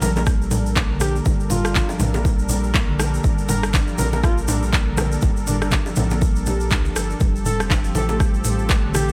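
Spiritual and hypnotic, this afro house excerpt in G minor at 121 BPM with a 16th-note swing rides a deep, layered electronic kick and tape-warm afro-pop kit with handclaps, rim click and toms, entering at 0.3 seconds, over a round, dark analog bass and woody soft-mallet marimba arpeggios, both pumping against the kick with the warbling, detuned analog pad, while quiet congas, tight high-tuned bongos and a grainy, distant egg shaker fill out the groove beneath a smooth, expressive sawtooth lead with vibrato, chorus and dub echo, all set in light reverb as the harmony moves from Gmadd9 to F at 7.2 seconds.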